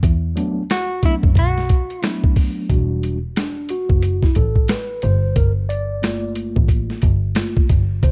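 A compressed, pitched-down boom bap kit with a thumpy kick and gritty, tape-toned character and a rich, bowed double bass with smooth vibrato open this cool, smoky jazz-hop excerpt together, both up front over a swung groove. A mellow tine electric piano soon comes in through its built-in speakers, and a clean, picked hollow-body guitar carries a brief melody from 0.7 to 2.3 seconds before the electric piano takes a solo at 2.7 seconds over Em9 and Gm9 chords. The production is dark and dry, with little reverb.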